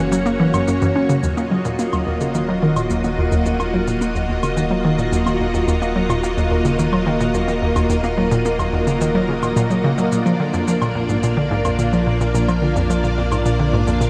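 A hollow, bouncy square-wave pluck drives this mysterious, hypnotic excerpt of sequencer-driven ambient space music, its detuned riff sitting up front with chorus and tape echo at a straight 108 BPM in Eb minor. Around it, a lush vintage string machine holds sustained chords with ensemble chorus, a round, deep analog bass anchors the low end, and a pulsing, tempo-synced gated texture shimmers in the background while tape-warm shaker and woodblock tick along from 0.1 seconds. Everything is bathed in a huge, wet ambient reverb, and the harmony moves from F# to Ebmadd9 at 1.2 seconds before reaching Bb at 10.1 seconds.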